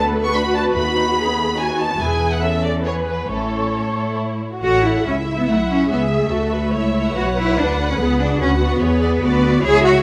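Warm second violins, portamento-tinged violas and a clear, up-front cello section open this spirited, cheerful classical-period movement for string orchestra in A major at 143 BPM in a rubato 3/4, with a distant, intense violin melody joining at 0.2 seconds and rich, up-front double basses entering at 0.7 seconds, the bowed, vibrato-laden sections set in a moderate recital hall reverb as the music turns to a new section at 4.6 seconds in this passage cut from a longer piece.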